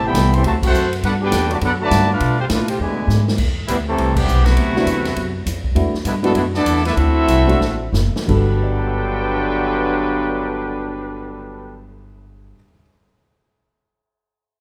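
Joyful and swinging, this big band swing passage in G major moves at a brisk 172-203 BPM, with a clear, vintage-toned trumpet section carrying the vibrato-tinged melody up front over a tight trombone section on the second line. A woody pizzicato upright bass anchors the low end while a swinging drum kit with punchy kick, snare, hi-hat, ride, crash and cymbal swells drives the groove, punctuating band accents and drum fills. A dark, mellow baby grand piano with audible action noise joins at 4.8 seconds just before the tempo slows from 5.8 to 8.3 seconds, and the band sits in a moderate recital hall reverb.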